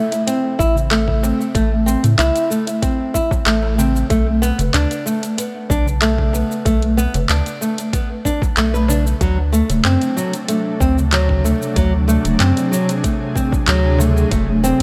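A light reverb and a digital ambience frame this short excerpt of organic downtempo, with a mystical, warm mood in a straight four-four feel. A dark, fingerpicked nylon-string guitar opens at 0.0 s and sits up front, playing arpeggios with audible finger squeak and a delay trailing its notes through a progression of Am, Bm7, D7 and Fmaj7. An electronic-sounding afro-pop drum kit of cabasa, handclaps and metallic hi-hat joins with studio reverb, while a small, crisp metal-shell darbuka struck with hard hands stays in the background. From 0.6 s a round analog bass adds deep, dark, sustained tones with a fast attack, alongside a gritty, thumpy, overdriven electronic kick drum with a compressed, sampler-style punch. At 9.8 s an ethereal, airy pad of detuned unison sawtooth and triangle tones eases in with a slow attack, ensemble chorus, its own reverb and sidechain pumping, holding sustained chords under the groove.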